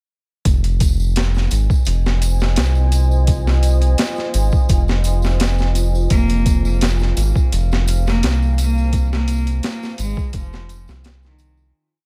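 Smoky and cinematic, this short trip hop piece in F minor moves at 85 BPM in a straight 4/4, tuned slightly low, and settles on a single Fm7 chord. A gritty, sampler-style boom bap kit sits up front from 0.5 seconds, pitched down, compressed and overdriven, with a thumpy kick, a high-tuned snare and hi-hat in a looped, edited breakbeat that carries the sound of a large room. Beneath it a round, deep analog bass plays an evolving dub-style line in its low register, while a tambourine hovers in the background with loose, acoustic percussion. At 1.6 seconds a dark, detuned ambient pad fades in slowly with sustained chords, thickened by chorus and its own reverb. A single bowed cello, earthy and nasal with light vibrato, enters at 6.1 seconds with a repeating riff trailed by dub echo, and the whole groove fades out from 8.0 seconds to the end.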